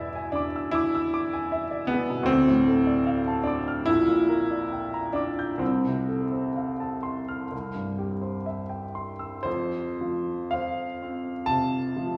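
This is a romantic classical nocturne for solo piano in F major, serene and tender in mood, moving in 4/4 with a free rubato that lets the tempo drift between 52 and 79 BPM. The piano is the only voice, playing throughout from Bb1 up to G6 with a woody, intimate tone, long sustain and audible action noise that keeps it close and present. A recital-hall reverb of about 1.7 seconds surrounds it, heard from further back in the room, adding a soft halo around the close instrument. The harmony opens on E7 and passes through Dm, Gm/Bb, F/C and C before arriving home on F at 9.5 seconds, where a new section begins. The passage is taken from a longer piece and stops at 12.2 seconds.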